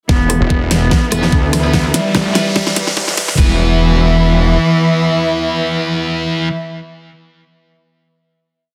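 Heavy wobble dubstep in E minor at 146 BPM with a half-time feel, menacing and dense, built as a short build from 0.1 to 3.4 seconds that resolves onto a held final chord. An overdriven knocking kick and a drum kit with a huge snare, bright hats and rim clicks drive the build alongside a drum fill, filter sweep and background riser. Meanwhile an up-front metallic FM wobble bass with changing wobble speed dominates the low end until 4.6 seconds, answered until 2.3 seconds by a snarling, detuned sawtooth bass chopping out phrases. Above them a dark bowed cello repeats a smooth riff with vibrato under a sidechain-pumped, sul tasto string section, a morphing vintage wavetable pad, and sparse echoing chord stabs from a high-gain, double-tracked electric guitar that ring on through the final chord to about 6.5 seconds.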